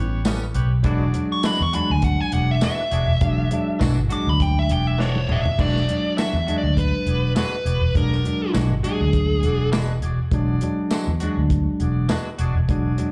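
A dark, overdriven lead guitar carries the melody up front from 1.3 s to 9.7 s with slapback echo in this rollicking yet laid-back soul blues, which is cut from a longer piece. Beneath it, a round, punchy muted bass and a dry soul drum kit with a tight kick and tambourine hold the groove, with a drum fill at 5.0 s. A twangy clean guitar with chorus and slapback stabs, a bell-like electric piano adds accompaniment, and a clear, tight horn section sustains chords over A9 and E9, all heard as a live gig through a club PA with small-room reverb.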